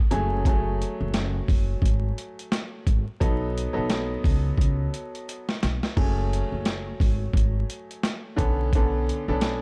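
Moody and dark, this boom-bap hip-hop excerpt sways at 87 BPM with a swung 16th feel in F# minor, cycling through F#madd9, B7 and Bm9 chords. A gritty, compressed sampler-style kit with a thumpy kick, medium-tuned snare, hi-hat and crash sits up front beside a woody pizzicato upright bass on gut strings, while a brilliant, vintage-toned upright piano plays filtered accompaniment lower in the mix. The drums break into a fill from 4.6 to 6.0 seconds, and the dry, shadowy production carries a layer of vinyl crackle.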